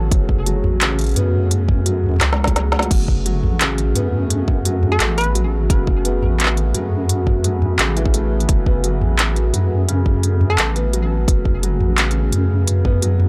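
A deep, moody sawtooth pad holding an F#madd9 chord with chorus and sidechain pumping opens this tense, spacious half-time drum and bass excerpt at 172 BPM in F# minor, joined at once by a soft felt-muted upright piano playing arpeggios through tape echo and an up-front wobbling sine bass with chorus, while a hard-clipped electronic kick and a kit of woody snare, crisp hats, handclaps, toms and crash cymbal enter at 0.1 s with a drum fill at 2.2 s, and a hollow, bright square pluck adds brief melody at 4.9 s, captured in a dry, gritty hardware recording with transformer saturation.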